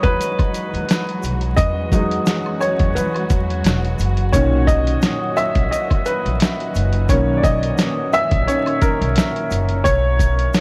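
Over vinyl crackle, a clear, woody upright piano leads this dreamy, cosy lo-fi hip hop passage in B major at 87 BPM with a light 16th-note swing, its cassette-tape haze sitting up front above lush bowed strings with gentle vibrato, a pizzicato upright bass, and a compressed, pitched-down sampler kit of thumpy kick, medium-tuned snare and hi-hat roughened by overdrive and 12-bit grit, while an egg shaker and woodblock join quietly in the background at 0.2 s as the harmony moves from Emaj9 to Bmaj9 at 4.3 s, all in a close, dry-sounding space cut from a longer piece.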